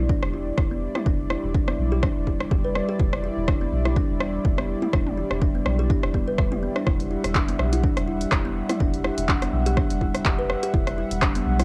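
Recorded at home onto cassette with light reverb, this excerpt of spiritual, driving afro house moves at 124 BPM in E minor with a swung 16th-note feel, resting on a single Em7 chord. A punchy, overdriven electronic kick sits up front beside a layered deep house kit of handclaps, hi-hat, rim click and toms, while a round, dark analog bass with a nasal edge pumps under sidechain compression. A smooth, mellow sawtooth pad with chorus holds sustained chords as a woody, hollow kalimba plays short, filtered arpeggios through tape echo.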